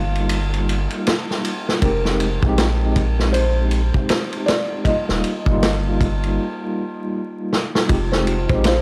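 Cinematic and hypnotic, this trip hop excerpt, cut from a longer piece, moves at 79 BPM in F minor with a swung feel, shifting between Ebadd9 and Fm7 as a barky, bright tine electric piano with tremolo, sampler grit and tape echo carries the accompaniment beneath a muted, mellow felt-muted upright piano melody that sits intimately in the background with its own tape echo. A deep, round dub sub bass sits up front, and a vintage drum kit entering at 0.2 seconds brings a punchy kick, medium-tuned snare and dark ride cymbal with a rolled-off top. After a break at 6.4 seconds ends in a drum fill, a delicate, slightly out-of-tune music box adds tinkling arpeggios from 7.9 seconds, all framed by a small, dry room with gritty transformer saturation and vinyl crackle.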